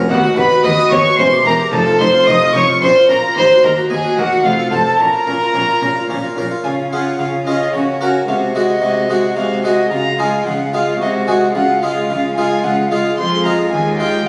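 Driving and dramatic, this baroque-style concerto movement moves at 110 BPM in a straight 3/4, cut from a longer piece and set in B-flat minor before turning to D-flat major at 6.6 seconds. A solo violin with light vibrato and a reedy gut-string tone sits up front and carries the melody along with a very quiet violin section, while a rich, lightly vibrating violin section plays a second line. An up-front harpsichord with a round, plucked French-style sound fills out the harmony alongside a dark viola section in the background. A close cello section anchors the bass, joined by a double bass section that drops out at 6.4 seconds. All the strings share a period-style bowed sound, and the whole ensemble is heard through a wet recital-hall reverb, as if captured on a phone in the room.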